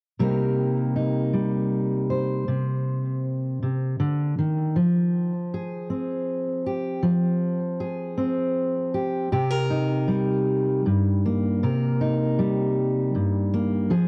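Folk piece in C minor for solo fingerpicked steel-string acoustic guitar, moving at a slow 52 BPM in a straight 6/8 with a bittersweet, wistful mood. The full-bodied dreadnought sits up front with a cassette-tape grain and light reverb, giving it the intimate feel of a home recording. Spanning G2 to C5, it moves from Cm7 to Fm and returns to Cm7 at 9.3 seconds in this short cut from a longer piece.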